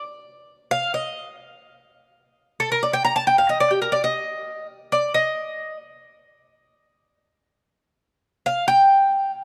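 A lone acoustic Cuban tres, picked on its metallic double courses with some strings doubled at the octave, carries this short, danceable Latin passage cut from a longer piece, moving at 136 BPM in a straight 4/4 and tuned to A4 = 442 Hz. The tres sits up front between G4 and Bb5, playing from the start to 5.8 seconds and returning briefly at 8.5 seconds, with a light reverb around its warm, metallic tone.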